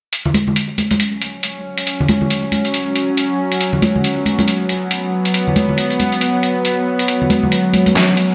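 A huge ambient reverb hangs over this brooding, meditative fragment of deep dubstep, cut from a longer piece and moving with a swung, half-time feel. A trip hop sampler-style drum kit arrives at 0.1 seconds, its hi-hat and medium-tuned snare sounding gritty, compressed, pitched down and tape-warm, sitting up front in the mix. Congas enter at 0.3 seconds with an acoustic, small-room character, thrown into a dub echo. From 1.0 seconds a bowed-like drone holds sustained chords between F#3 and C#4, its string-like, tense tone built from sawtooth and triangle layers in unison with a noise layer, ring modulation and vibrato. The drone's slow attack, long release and built-in reverb keep it hovering prominently alongside the percussion to the close of this 8.3-second passage.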